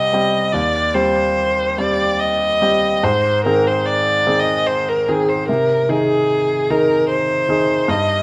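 Romantic classical duo in 3/4 at 74 BPM with a rubato feel, tuned to A4 = 442 Hz, where a single rich, focused violin with vibrato sings a melancholic, yearning melody between Ab4 and Eb5 over clear, intimate grand piano accompaniment reaching from C2 to Ab4, its action noise audible, both parts up front through close, detailed microphones with light reverb as the harmony moves from C minor to Ab across this 8.2-second cut from a longer piece.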